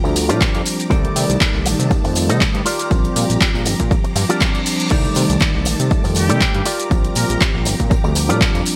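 Bright, 1980s-style digital production with light reverb frames this brief cut from a sensual, funky filtered disco house groove, swung on the sixteenths, with sidechain pumping on most parts. A punchy electronic kick and a tape-colored analog drum machine of hi-hat, shaker, handclaps and crash cymbal, with gated reverb, sit up front beside a very quiet acoustic tambourine. A fat, detuned sawtooth bass, a clean tine electric piano through phaser, an envelope-filtered guitar riff with analog chorus and a lush string machine in the background carry the Bb6 and Cm69 changes, while a reverse cymbal appears at 4.1 seconds and a clear, tight horn section plays a short melody from 6.2 seconds.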